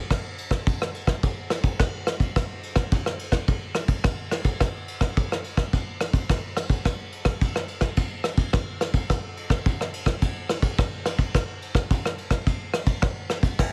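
A vintage brush drum kit enters at 0.1 seconds and carries the excerpt alone to 13.7 seconds, playing a playful, lively samba in straight 4/4 with kick drum, rim click, ride and crash cymbal. The kit sits up front in a studio room, its brushed sound dark and smooth with a tight kick and a rolled-off top. Light reverb and heavy compression give the whole short cut the sound of a radio broadcast.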